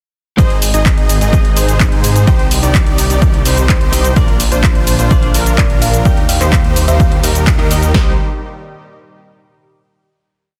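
Festival progressive house in C minor at 127 BPM, this emotional, euphoric piece opens straight into a drop driven by a punchy, overdriven big-room kit with four-on-the-floor kick, snare, handclaps, cabasa and hi-hats, a thick, menacing detuned saw bass and huge, bright supersaw chords in a dotted rhythm with sidechain pumping and delay, backed by a mellow unison lead doubling those chords, a very quiet lush pad and a clean, direct-recorded electric guitar playing held chords with syncopated pushes, while a round, tine-like thumb-piano-style pluck with chorus adds short phrases from 5.6 s before a band accent at 7.5 s and a final chord at 7.9 s, all in a dense, heavily limited, dry modern mix.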